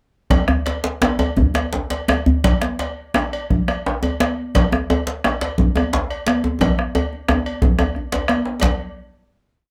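From 0.3 seconds, a dark, saturated bombo, bright, high-tuned congas, a metallic cowbell playing a bell pattern and two djembes (one soft-handed and band-limited, the other hard-handed and up front with lead drum phrases) launch an earthy, driving West African drum ensemble piece in 12/8 at 112-123 BPM that keeps speeding up, heard through close, detailed microphones with light reverb, as a drum fill from 6.6 seconds leads to a final hit at 8.6 seconds.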